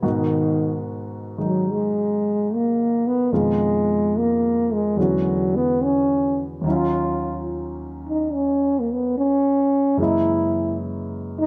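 A breathy trombone carries the melody in this short jazz fragment, its dark, whispered tone and soft attack setting a late-night, romantic mood. Entering at 0.1 s, the solo line sits in a low-to-middle register and sounds intimate yet roomy. Beneath it, a warm grand piano plays accompaniment across the whole passage, with the mechanical noise of its action audible up close. The tempo is a slow 72 BPM in 4/4 with a swung eighth-note feel, and the harmony moves through G#m9, Fm7b5, E13 and D#m9 before reaching F#13 at 10.0 s. Moderate spring reverb and small-room ambience round out a dark, warm production.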